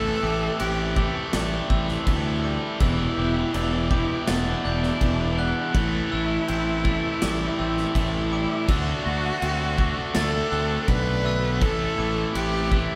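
A bowed cello with focused vibrato carries the melody over a hopeful, soaring post-rock bed at 82 BPM, joined from the start by a tight distorted guitar riff up front, a dark, round fuzz bass, a twangy clean guitar playing arpeggios with slapback echo, and a sparkling glockenspiel struck with hard plastic mallets in the background. A big acoustic drum kit with a punchy kick, medium-tuned snare and bright crash cymbals comes in at 0.6 seconds, as the chords move from Am7 through Em7 and D7 back to Am7. The band sounds live in a stone room with moderate reverb and a faint mains hum, in a short cut from a longer piece.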